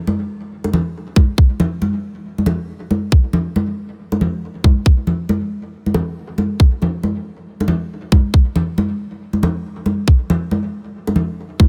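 A half-time dubstep groove in 4/4 with a swung sixteenth-note feel sets a dark, cavernous mood in this short cut from a longer piece. Congas and bongos open the track with ringing, soft-handed acoustic tones from a small room, trailed by dub echo, before a tight, layered electronic kick drum with a tape-warmed edge enters at 1.2 seconds and sits up front, louder than the hand drums. The overall sound is dry and close, with little reverb.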